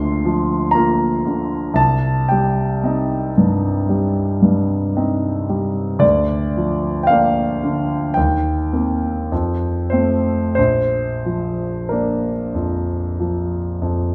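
A solo grand piano opens on a Bb/D chord, its tone warm, polished and set up front. This is a romantic nocturne in Bb major and 4/4, tender and dreamy, moving slowly at 45-59 BPM with a free, rubato feel. The harmony drifts from Cm at 1.8 seconds back to Bb/D, then moves through Cm7/Eb and F before settling on Bb at 10.6 seconds. The piano spans a range from Bb1 up to C6 and plays alone for the full 14.1 seconds. A wet recital hall reverb with a 1.6-second decay surrounds the instrument, adding a soft glow to this passage cut from a longer piece.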